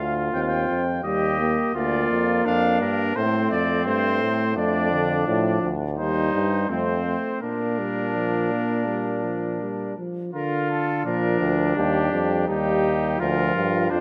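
Set in a moderate concert-hall reverb, this stately yet lively excerpt of a classical imitative canzona for brass ensemble features a distant, roomy trumpet carrying the melody, a clear, up-front flugelhorn with light vibrato and a soft attack on the second line, a mellow, vintage-toned trombone in the accompaniment, and a warm, up-front euphonium holding the bass, with a new section arriving at 10.3 seconds.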